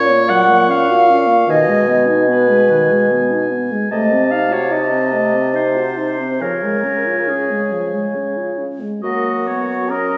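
Tender and warm, this short excerpt from a slow romantic movement for wind quintet moves in 3/4 at around 68-76 BPM with a flexible, rubato feel in F# major. All five players sound together throughout, the flute carrying the melody in an airy, hollow voice with vibrato and soft attacks, set back in the blend. The oboe sings a distant, roomy second line, while the clarinet's smooth top and the French horn's mellow, lightly vibrating tone fill in the accompaniment. The bassoon anchors the bass with a punchy, up-front presence and light vibrato. The harmony passes through a diminished chord on C before settling on a C# chord and resolving to F# as a new section begins at 9.0 seconds. The ensemble is heard from further back in a wet recital hall with a reverb time of 1.5 seconds.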